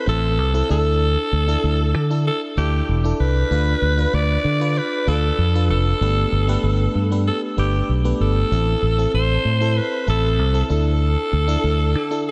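Dramatic and nostalgic, this short cut from a longer 1980s-style pop piece moves at 96 BPM in a straight 4/4, its chords drifting from Am through Dsus2, Bdim/D and Gadd9 inside a dreamy mix soaked in lush hall reverb. A breathy, raspy alto saxophone carries the melody up front with bright vibrato and a touch of delay, while a glassy FM electric piano supplies bell-like accompaniment shimmering with chorus and tremolo. Underneath, a round, punchy fingered electric bass enters at 0.1 seconds with a dark, direct presence.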